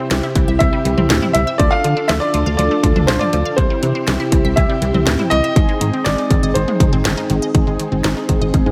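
A punchy house drum kit, with a cracking snare up front, drives this upbeat, nostalgic synth-pop piece at 121 BPM in a straight 4/4, entering at 0.1 s together with a round FM bass. Over chords moving from C to Dm, back to C and on to Ab, a natural-toned baby grand piano carries the melody until 7.3 s. Behind it sit dark, detuned synth brass with chorus and vibrato, a vintage organ-like ensemble string pad, and squelchy, resonant blip-pluck arpeggios with phaser and tape echo. A moderate recital hall reverb lends space, and a drum fill at 8.5 s punctuates the new section that begins at 7.5 s.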